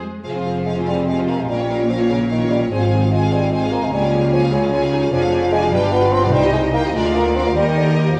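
This excerpt from a quick classical-period orchestral movement opens with bowed strings: a rich, close violin section on a second line, a lush viola section in the background and a distant double bass section with a soft attack, all sounding from the very start. At 0.2 seconds the clear, intense melody violins enter alongside a dark solo bassoon, a smooth, even cello section on the bass line, and soon after a hollow, airy flute section and a French horn section holding tight, mellow chords. A roomy, distant clarinet joins at 0.9 seconds to add another second line. In F minor and 6/8 at 98 BPM with a rubato feel, the music is restless and dramatic, moving from F minor through B-flat minor and D-flat to a diminished chord and G7 before settling toward C minor and E-flat. Vibrato colours the strings and flutes, the bassoon carries a light vibrato, and a wet recital hall reverb surrounds the ensemble.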